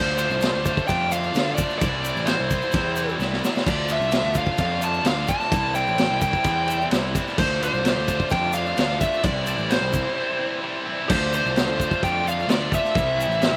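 A straight 4/4 indie rock groove, jangly and wistful, rides on a raw, gritty garage drum kit with a punchy kick and a fill at 3.2 seconds, a fuzzy picked bass and a faint, grainy egg shaker, while two bright, overdriven electric guitars play riffs with slapback echo in the background, a very quiet, mellow tonewheel organ holds sustained chords through a slow rotary speaker, and a dark, smooth lead guitar carries the melody up front over alternating Dm7 and Cadd9 chords, with a break at 10.2 seconds in this dry excerpt from a longer piece.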